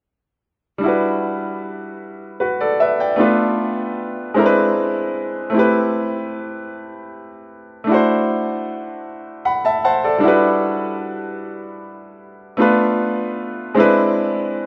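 A bright, up-front grand piano opens this sultry, late-night R&B excerpt in a straight 6/8, its brilliant, short-sustained accompaniment moving through jazzy chords such as Em7, Bm7b5 and Am9, with a fill at 9.1 seconds before a new section begins at 10.2 seconds, all set in a lush hall reverb within a rough home-demo mix.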